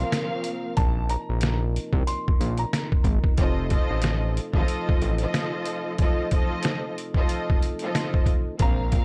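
Boom-bap hip-hop at 92 BPM with a swung sixteenth feel, gritty and tough, this short cut from a longer piece rides a Bbsus2 chord that moves to F7 at 3.4 seconds. Up-front, pitched-down sampler drums with a thumpy kick and medium-tuned snare enter at 0.1 seconds over a fat, detuned sawtooth bass with tube saturation that sounds from the very start, while a lush bowed string section holds the harmony and a mellow tonewheel organ with slow rotary speaker sustains chords in the background. A dark, woody upright piano with audible action noise and analog delay plays a high melody until 2.9 seconds and returns briefly at 8.6 seconds, all captured dry with cassette-tape grit.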